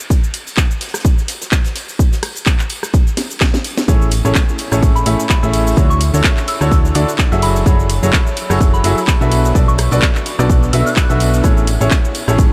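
Soaked in a huge, dreamy reverb, this euphoric, joyful piano house excerpt opens on a punchy, up-front electronic kick and a tape-tinged house kit with a cracking snare, handclaps, rim click, hi-hat and shaker, while a tambourine sits in the background beside a very quiet soft-mallet kit, leading to a drum fill at 3.2 seconds. At 3.9 seconds a brilliant, open baby grand piano riff with tape echo arrives alongside a round, dark FM bass, both pumping with sidechain, as the chords move through Amaj7, Dmaj9, F#m9 and Bm7. A pure, mellow synth bell melody floats in the background from 5.0 to 11.2 seconds, colored by chorus, phaser, tape echo and vintage 12-bit sampler grit.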